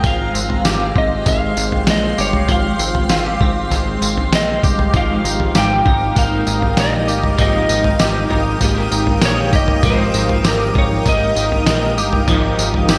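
This floating, dreamy dream pop excerpt opens with everything but one guitar already in motion: a muffled, tape-warm lo-fi sampler-style drum kit sits up front with a thumpy kick, medium-tuned snare, tambourine and toms, sounding compressed and re-recorded in a large room. Beneath it, a plucky analog bass mixes sawtooth and pulse-wave tones into a punchy, funky line with a fast attack and decaying filter pluck. A bright, twangy clean electric guitar plays picked arpeggios through analog chorus, digital delay and slapback echo, while a granular cloud pad holds blurred, detuned sustained chords with a slow attack and its own built-in reverb. Over the top, an electric slide guitar carries the melody with a warm, slightly broken-up tone, fed through digital delay and slapback echo. At 4.9 s the harmony moves from Fmadd9 to Ebadd9 and a second, darker clean electric guitar enters in the background with tremolo, ensemble chorus and slapback echo, all set in a lush hall reverb that gives the mix a big arena sound.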